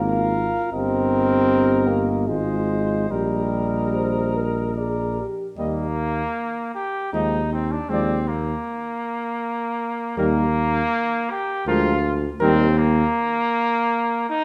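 A stately classical brass quintet opens together in Eb major, in a rubato 3/4 at around 71-82 BPM, with a dark, close-miked cornet carrying the melody over a warm, up-front trumpet second line with light vibrato, a soft-attack French horn sitting in the background, a present trombone, and a roomy bass trombone anchoring the low end in a moderate recital-hall reverb, until the other parts fall away by 13.0 seconds and the trumpet finishes alone at 14.4 seconds in this fragment cut from a longer piece.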